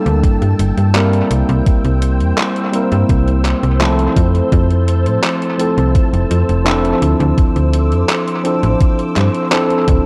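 Woozy and hazy, this vaporwave excerpt in a straight 4/4 sets a bright, clean tine electric piano, dressed in lush chorus, 12-bit sampler grit and analog delay, over a soft, silky string machine with phaser and ensemble chorus, while a snappy, metallic slap-like FM bass and an up-front thumpy, overdriven electronic kick join a detuned 8-bit drum machine of handclaps and hi-hat, all moving through Gm69, C7, Fmaj7 and Dm9 in an echo-heavy mix with light reverb.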